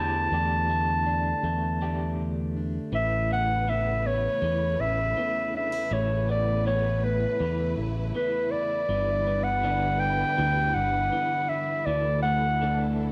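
An acoustic folk-pop ballad at 80 BPM in 4/4 with a straight feel, this excerpt from a longer piece carries a hopeful, intimate mood. A mellow clarinet in classical style sings the solo melody up front, lightly doubled by a slapback echo. Beneath it, a fingerpicked jumbo steel-string acoustic guitar gives a full-bodied background bed, while an electric guitar through a small old amp adds slightly broken-up, lo-fi arpeggios with tremolo. A fingered electric bass sits direct and amped near the front, and at 2.9 seconds a distant symphonic string section enters with lush bowed chords, shaded by vibrato, soft attacks and expressive portamento. The harmony moves from A7sus4/E through Aadd9 and G6 to Dsus2, all set in a moderate echo chamber reverb.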